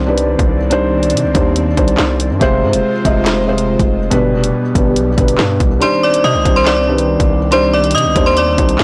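A blown-out, overdriven recording with light reverb carries this dark, tense half-time drill excerpt, where a soft, felt-muted upright piano with audible action noise sits up front over an airy, breathy pad in the background and a saturated, distorted 808-style bass, while a drill kit with a knocking kick, sharp snare, bright hats and handclaps comes in at 0.2 s, and at 5.8 s the kick briefly drops out as a metallic, inharmonic FM bell rings in with the melody over a returning Cmadd9 chord.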